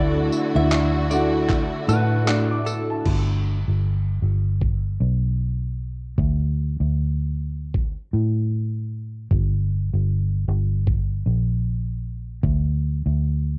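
A swung sixteenth-note feel in 4/4 sets an easy-going, heartfelt mood in this acoustic pop excerpt, with a gritty, compressed sampler-style drum kit entering at 0.3 seconds: a thumpy kick, handclaps, tambourine and crash cymbal, re-recorded in a large room and sitting up front. Beneath it, a dark, round, foam-muted fingered electric bass stays punchy and prominent throughout. The opening bars on Dadd9 layer a double-tracked, thumb-plucked flamenco guitar, lush bowed symphonic strings with vibrato and portamento, and a clean, direct-recorded electric guitar playing picked arpeggios through phaser and analog delay, while a polished grand piano with short sustain sits in the background and adds a fill from 1.5 seconds. By 3.6 seconds those guitars, strings and piano have fallen away, leaving bass and drums to carry the G, D5 and Gm changes. The sound is dry, with a home-cassette character.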